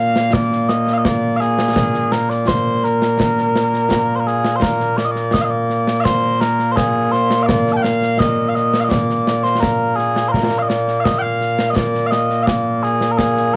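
Mellow, sweet small bagpipes carry a continuous, vibrato-laden melody up front with plate reverb and a cassette tape tint, joined from 0.2 seconds by close, dry concert snare and bass drum with dark cymbals in this stirring, ceremonial fragment of Scottish pipe music in a straight 2/4, cut from a longer home recording.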